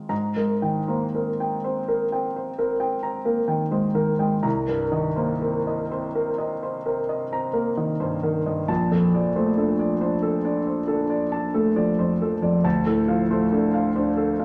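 A concert grand piano, close and intimate with deep bass and the audible noise of its action, plays alone in this serene, hazy impressionist classical excerpt in Ab major. The 9/8 pulse moves slowly at 37-47 BPM in dotted quarters with a free rubato feel, drifting through Abmaj9, Cm7, Bbmaj9 and Dm7 across a range from Bb1 to Bb5. A wet stone room reverb with a 1.2-second decay surrounds the natural, up-front sound for the full 14.4 seconds.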